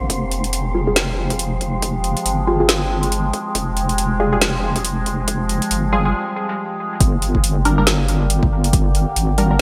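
Built on a half-time 4/4 pulse at 139 BPM with a 59% swing on the sixteenths, this brooding, heavy slice of deep dubstep is cut from a longer piece. A deep, mellow wobble bass with tube saturation and chorus sits up front throughout, joined from the start by a nasal, resonant drone of sustained chords whose overtones move, and by an airy, wind-like tuned noise texture in the background that drops out at 6.1 seconds. A punchy, layered electronic kick with a high-pass filter arrives alongside a garage kit of woody snare and metallic hats, overdriven, up front and wrapped in gated reverb. From 0.7 seconds, a muted, detuned dub chord stab with a filter pluck, phaser and dub echo threads through the build-up, its own filter sweeping over Fmadd9. After a brief break, the drop lands at 7.0 seconds on Gm, all framed in a bright 1980s-style digital production with light reverb.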